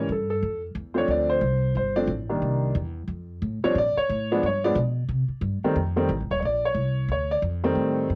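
Jazz piano trio in a sophisticated, swinging mood at a brisk 180 BPM in Bb major, cut from a longer piece, where a smooth, vintage-toned baby grand piano with a cassette-tape character takes a solo, carrying the melody, while an up-front upright bass, plucked on gut strings with a woody, thumpy sound, anchors the harmony, all captured dry in a home cassette recording.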